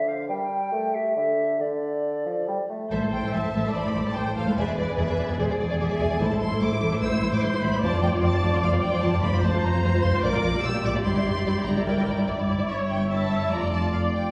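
A lush, bowed violin section carries the melody from 2.9 s in this restless, stormy classical piece in A minor at 146 BPM, supported by dark second violins, expressive violas, woody cellos and a smooth, even double bass section that sit at a distance in a wet recital-hall reverb. Before the strings arrive, a brief wind opening pairs a pure, crisp-attacked silver flute and a soft, shadowy clarinet on second lines over an up-front bassoon with light vibrato, which stops at 2.9 s. The fragment is cut from a longer work.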